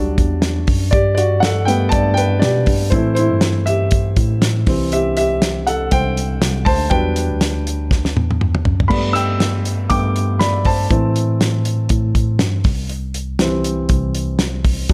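Piano-driven pop at 120 BPM in 4/4 with a light sixteenth-note swing, this bittersweet, dramatic excerpt puts a dark, vintage grand piano up front, its smooth, short-sustained voicings carrying the lead across both sections over an Em7, Gadd9, Am, C progression. A mellow tine electric piano, clean and heard through its built-in speakers, holds down the low bass register, while a damped 70s acoustic kit arriving at 0.2 s brings a fat snare, tight kick, toms, hi-hat and dark crash cymbals with a dry, rolled-off top. A drum fill from 7.9 to 8.9 s leads into the second section, and light reverb gives the whole a gentle sense of space.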